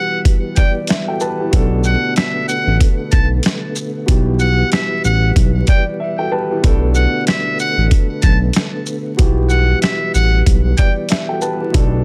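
Dark and gritty, this 94 BPM boom-bap hip-hop excerpt cut from a longer piece swings its 16ths over an Em to Bm7 progression, with a buzzy, close-miked metal-muted trumpet carrying a jazz-style vibrato melody until 10.9 seconds above a boxy, deep-toned concert grand piano and a round, key-clicking tonewheel organ spun through a fast rotary speaker, while a pitched-down, compressed sampler drum kit with a thumpy kick sits up front beside a smooth sawtooth-and-square synth bass gliding in at 1.5 seconds, all in digital ambience with vinyl crackle and a dense, heavily limited master.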